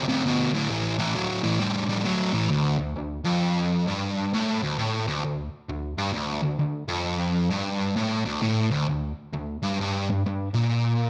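Gritty and raunchy, this rock clip is cut from a longer piece and runs 11.1 seconds in 4/4, with a swung eighth-note feel. A single sludgy electric guitar carries it alone from start to finish, dark and overdriven, picked and double-tracked so it sits thick and up front. It stays low in its register, moving from D5 to A5 in the opening passage before a new section begins at 2.5 seconds, returning to D5 and holding there until a shift to G5 at 9.8 seconds. A moderate reverb from a large studio room gives the heavy tone some space around it.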